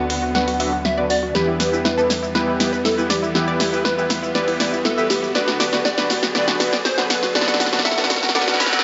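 Progressive house build-up at 120 BPM in E minor, cut from a longer piece, feels expansive and driving as a bright, detuned unison lead carries a catchy melody through phaser and delay over nasal analog pluck arpeggios, soft supersaw stabs, and sul tasto chamber strings holding sustained chords behind filter sweeps, while a round, deep analog bass, a very quiet riser with a reverse cymbal at 8.3 seconds, and an up-front house kit with a punchy snare, bright hats and shaker drive a fill across the whole passage, all bathed in a huge ambient reverb over a Bm/D, Em and back to Bm/D progression.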